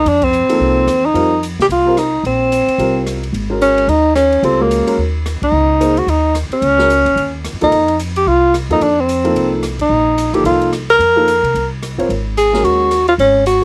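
Swinging in a loping four, this searching, hypnotic modal jazz excerpt sets a punchy, up-front tenor saxophone solo, with light vibrato, scooped notes and a smooth top, over woody, thumpy pizzicato upright bass, a warm, vintage grand piano comping on suspended chords that move between F and Ab, and an airy, polished big-band drum kit with punchy kick, snare, ride, hi-hat and rim clicks, the whole band hitting accents at 0.2, 5.4 and 9.8 seconds, while cassette tape colours the saxophone and piano and light reverb surrounds the home recording.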